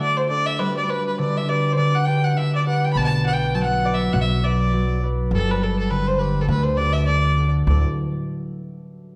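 A single bowed fiddle carries the melody up front, its tone rich, nasal and earthy with a light vibrato, in this cheerful, lively Celtic reel cut from a longer piece. It runs at 203 BPM in 4/4 with swung eighths, in D major and tuned slightly low to A4 = 438 Hz. A bright, ringing concert harp, thumb-plucked and also up front, accompanies from the start through a D, G, Bm and G progression that returns to D, and it lingers until 8.3 seconds after the fiddle stops. A woody, pizzicato upright bass with steel strings joins at 3.0 seconds, adding a dark low foundation. The production is dark and warm, set in a moderate recital hall reverb, and the excerpt moves from its opening section into the start of a new one just before the end.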